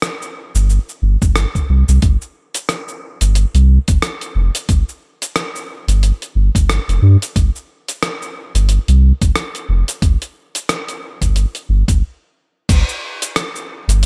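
A dry recording with little reverb frames this meditative, organic downtempo excerpt, built on gently swung sixteenths. A gritty, tape-warm dusty soul drum kit with cabasa, hi-hat, rim clicks and crash cymbal opens at 0.0 seconds. A deep, round sine sub bass joins at 0.5 seconds, sitting up front with a fast attack and long sustain, and a compressed, thumpy electronic kick follows from 1.2 seconds. A brief stop at 12.0 seconds breaks the groove before a short new section carries the cut-out fragment to its end.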